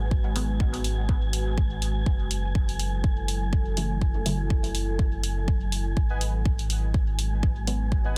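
A dark, moody pad of slow-attack sustained chords, a muted, detuned sawtooth dub chord stab with phaser and dub echo, a round sine sub bass and an airy, breathy wind-like noise texture open this hypnotic, nocturnal dub techno excerpt at 123 BPM in G# phrygian. All four pulse with sidechain pumping over a G#m7 to F#m7 progression, while an up-front, layered electronic kick and a tape-warm hi-hat re-recorded in a small room drive the lightly swung 4/4 groove. At 6.1 seconds a warbling, lo-fi, nostalgic synth keys riff with chorus and dub echo enters, all within a dense, heavily limited modern master.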